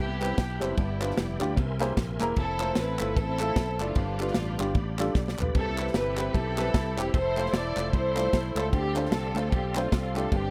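An echo-heavy studio mix sets this soulful, hopeful piece of uptempo gospel at 151 BPM in C major, swinging in 4/4 over chords such as Cmaj7, G7, Caug7, Fmaj7 and Dm7. An up-front string section with gut-string tone and light vibrato carries the melody through analog delay, while a bright, reedy tonewheel organ with key click, chorus vibrato and fast rotary speaker holds sustained chords in the background, and a round fingered electric bass anchors the low end. From 0.2 seconds a warm baby grand piano accompanies, a tight funk drum kit with a dry snare and tight kick plays, with a fill at 5.2 seconds, and hollow group handclaps add close percussion, with delay on the piano and drums.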